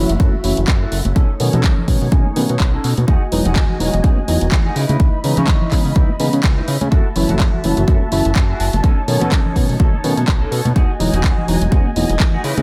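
Sensual and funky, this filtered disco house excerpt moves at 125 BPM in 4/4 with a loose 16th-note swing, set in F# dorian over a cycle of F#m7, B9, Emaj9 and C#m9 chords. A punchy, overdriven electronic kick sits up front, joined by a house kit of handclaps and bright hi-hats and by tambourine and congas that stay saturated in the background. A fat, detuned sawtooth bass carries the low end with a fast attack, while a clean tine electric piano plays accompaniment through a phaser and a twangy picked electric guitar riff shimmers with lush chorus. Bowed strings hold soft-attack chords with vibrato and a sul tasto smoothness, roughened by vintage 12-bit sampler grit. A filter sweep runs across the whole passage, and sidechain pumping gives the mix its breathing, disco-house pulse under a light reverb.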